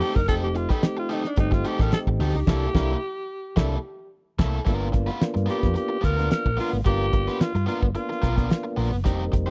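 A dry, close 1970s-style studio sound frames this gritty, playful funk cut, where a raspy, growling alto saxophone carries the melody until 8.7 seconds over an overdriven, picked electric guitar, mellow tonewheel organ stabs with chorus vibrato and a slow rotary speaker, a round hollow-body bass entering at 0.2 seconds, and a cloth-damped, thuddy drum kit with a fat snare and dark cymbals sitting up front, the band hitting an accent from 2.5 to 4.7 seconds.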